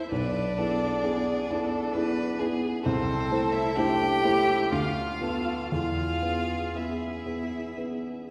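In a rubato 3/4 at 57-67 BPM, this solemn, melancholic slow romantic movement for piano quartet, cut from a longer piece, gives the melody to a rich, smooth-toned violin with vibrato, while a focused cello and a distant second violin carry bowed second lines, and a dark, mellow baby grand piano sits up front with audible action noise and short sustain, the ensemble heard from further back in a wet scoring-stage reverb as the harmony moves through E7/B, Am/C and Bdim/D to E.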